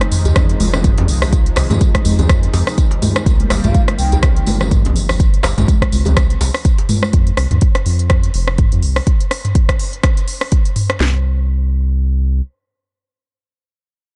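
The mix sits in a dark, small room with the top end rolled off, giving this cut from a longer afro house track an earthy, warm feel at 124 BPM with a light 16th-note swing. A deep kick and sharp snare from the electronic drum kit lead up front, joined by smooth hi-hats, rim clicks and toms. Around them sit high-tuned congas ringing from a distant large room, a tight, cracking djembe and a jingly tambourine tucked in the background. A round, sustained analog bass pumps against the sidechain under a soft, detuned pad with chorus, moving through Fm7 to Cm7 and then F5. At 3.6 seconds a breathy, hollow bass bansuri adds a brief vibrato phrase trailed by digital delay, and after the drums stop at 11.1 seconds the bass carries on alone until 12.4 seconds.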